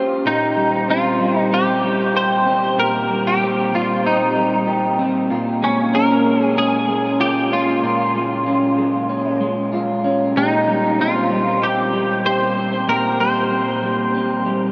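A straight 4/4 pulse at 95 BPM carries this haunting, ethereal dream pop passage, cut from a longer piece. An electric guitar through a small old amp opens at 0.0 s with arpeggios ranging from Bb2 to C5, its slightly broken-up, compressed tone sitting up front under lush chorus and a diffuse ambient delay. At 0.3 s a clean electric guitar joins with a bright, twangy melody between Db4 and C5, treated with ensemble chorus and its own diffuse ambient delay. The harmony moves from Cm7/Bb to Bbm7 at 5.3 s, then shifts to a C7 chord over Bb at 10.4 s, with both guitars playing through to 14.7 s. A huge ambient reverb with an 8.4-second decay soaks the whole mix, giving it a dreamy, floating haze.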